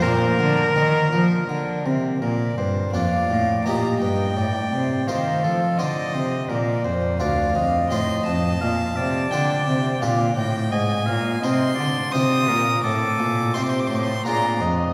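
A close, reedy gut-string violin carries the melody up front in this flowing, dance-like baroque-style sonata movement in 3/4, with a bright oboe adding a second line touched with light vibrato. Beneath them a rich, bowed period cello anchors the bass, and an airy, plucked single-strung harpsichord in French style fills out the continuo. The fragment, lifted from a longer piece, is bathed in the long, wet reverb of a church, with a new section taking shape from 2.2 seconds.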